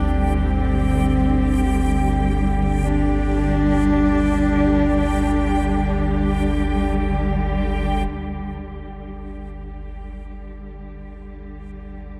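Vast and ominous, this dark ambient drone piece drifts in free time and is cut from a longer work. A deep, rumbling drone built from triangle and sawtooth tones sits low and up front, its slow attack and long release softened by built-in reverb and a lush chorus, with a filter sweep moving across it from 8.1 seconds. Above it, a studio cello section holds smooth, even bowed chords with vibrato, sounding distant yet up front. A single horsehead fiddle carries the melody between C4 and D4, its nasal, husky, earthy tone with airy bow, light vibrato and portamento heard close and trailed by tape echo until it falls silent at 6.7 seconds. A bright, reversed, swelling texture, detuned and granular, hovers high on G5, and a cathedral reverb with a long tail surrounds it all within a warm production.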